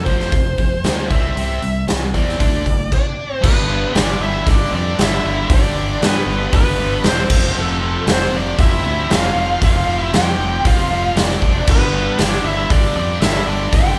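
Opening on a bluesy overdriven lead guitar's dark melody over two overdriven, picked rhythm guitars sitting back in the mix, growly fingered bass and a huge, up-front arena drum kit with punchy kick and bright cymbals, this powerful, swaggering hard rock excerpt in G mixolydian at 117 BPM hits a stop from 2.9 to 3.4 seconds as an octave-fuzz lead guitar enters with a second line, then continues over a G, F and G progression with the band playing live in one room under light reverb.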